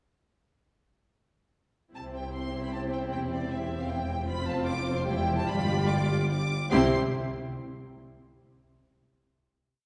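A rich, focused first violin section carries the melody from 2.0 seconds, singing high above a string orchestra in this brief, complete classical piece in C major, a fast, dramatic yet cheerful romantic movement in 3/4 at 140-156 BPM with a rubato feel. A second violin line and violas with portamento supply soft-attacked, tremolo-tinged sustained chords from 1.9 seconds, while a smooth, even cello section and a clear, distant double bass section share the bass line. The tempo slows from 3.7 to 6.7 seconds through a G7 before the closing C chord, all heard from further back in a wet concert hall.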